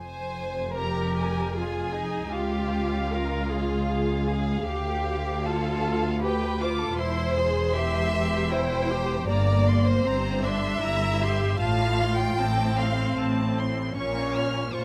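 Bowed violins, cellos and double basses open together in this lyrical, warm slow movement for string orchestra in three, its rubato phrasing carrying chords that move from darker minor colour toward brighter major harmony. The first violins sing an expressive, vibrato-laden melody high above a close, up-front second violin line, while distant-sounding cellos sit above rich, focused double basses, and the violas join at 0.8 s with a smooth-topped inner accompaniment. Close, detailed microphones capture the ensemble within a moderate recital-hall reverb, in a passage cut from a longer piece.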